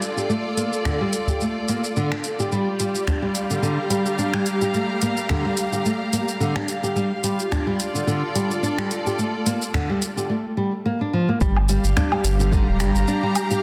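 A fingerpicked flamenco guitar sits up front with filtered, delayed arpeggios in this hypnotic, mystical organic downtempo excerpt in G minor at 108 BPM, with a light 16th-note swing over a Gm7 chord. A lush, bowed string section holds smooth sustained chords with vibrato and sidechain pumping, while an overdriven organic electronic kit of finger snaps, smooth hats, shaker and woodblock mixes with a deep, band-limited udu. At 11.4 s a round sine sub bass with tube saturation and an overdriven electronic kick arrive together, all set in a moderate hall reverb under a dense, heavily limited modern master.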